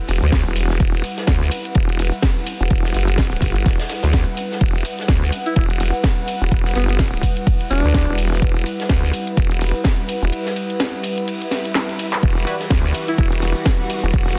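Swaggering and aggressive, this bass house cut moves at 126 BPM in 4/4 with a 58% swing on the sixteenths, sitting in E minor over an Emadd9 chord. A punchy, tape-warm electronic kick and a nasal, resonant vowel-sweep wobble bass sit up front, the bass wobbling through its formant filter with chorus and sidechain pumping. An overdriven house kit adds a cracking snare, handclaps, hi-hat, shaker and crash, while a distant, roomy soul kit with dark ride cymbal and snare stays in the background, and a warbling, nostalgic lo-fi pad drifts underneath with chorus and its own reverb. A vibrato-laden alto saxophone plays a jazz-style solo line from 5.5 to 8.2 seconds with dub echo, returning briefly near the close. After an electronic swell and a drum fill ending at 12.2 seconds, a lush, bowed symphonic string section enters with vintage 12-bit sampler grit, joined by a very quiet, band-passed sawtooth chord stab with phaser, all within a dense, heavily limited and fairly dry mix.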